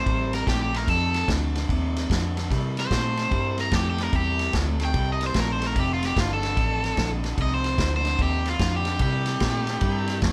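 Rollicking and soulful, this electric blues shuffle swings at 148 BPM in 4/4, a short cut from a longer piece played live by a band in one room with light reverb. A bright, overdriven stack guitar takes an up-front solo from F4 to G5, while a dark, slightly broken-up guitar through a small old amp plays a low riff bathed in spring reverb, over a round, punchy foam-muted fingered bass. A vintage kit with a tight kick, medium-tuned snare and dark ride cymbal sits up front with a rolled-off top as the chords move from C5 through F7 and C7, closing on a thirdless C7 at 9.0 seconds.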